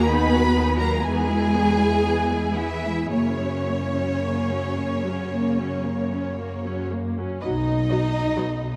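Bathed in a vast, echoing cathedral reverb, this brief fragment of a slow, tender romantic movement for string orchestra unfolds with a rubato feel and turns to a new section at 7.4 seconds. A lush, expressive violin section carries the melody with soft attack and vibrato, while a second, more distant violin line sits in the background and a smooth-topped viola section fills in the accompaniment. Beneath them, an even cello section and an up-front double bass section lay a rich, bowed foundation, with the violas and second violins stopping at 8.4 seconds.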